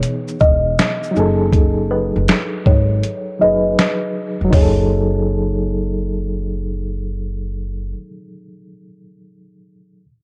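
Nostalgic and melancholic, this lo-fi hip hop clip at 80 BPM in F# dorian, cut from a longer piece, sets a hollow, band-limited kalimba melody over a reedy electric piano with fast tremolo, a gritty, pitched-down boom bap sampler-style kit of kick, snare, hi-hat, snaps, shaker and toms that drops out at 4.8 s, and a woody pizzicato upright bass entering at 0.4 s, moving from Emaj7 to F#m69 through a filter sweep, a spring reverb and the warble of worn cassette tape.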